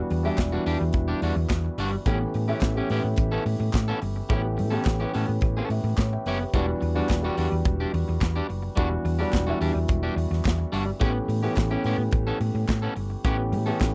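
Disco groove at 107 BPM in E dorian, sultry and driving, cut from a longer piece and moving between Em9 and A9 chords. A punchy, up-front acoustic drum kit with hi-hat, kick and snare sits alongside a round, dark hollow-body fingered bass, while a mellow baby grand piano with long sustain and a twangy electric guitar at the edge of break-up fill out the harmony, and hollow, band-limited group handclaps sit in the background from 0.4 seconds. The piano adds a fill between 5.4 and 6.5 seconds, and the dry, close recording has a 1970s studio character.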